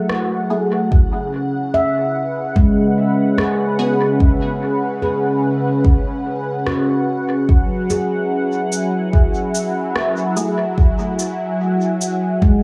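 Hazy and meditative, this ambient dub excerpt at 73 BPM in 4/4 with a 16th-note swing sets a smooth, detuned sawtooth pad with chorus and soft-fingertip handpan arpeggios with dub echo over a deep, up-front electronic kick from 0.9 s and a rim click and shaker re-recorded in a large room, while a muted, phased chord stab with a filter pluck appears from 0.5 to 4.1 s and again at 10.4 s across F#m9, C#7sus4 and F#7sus2 in an echo-heavy mix.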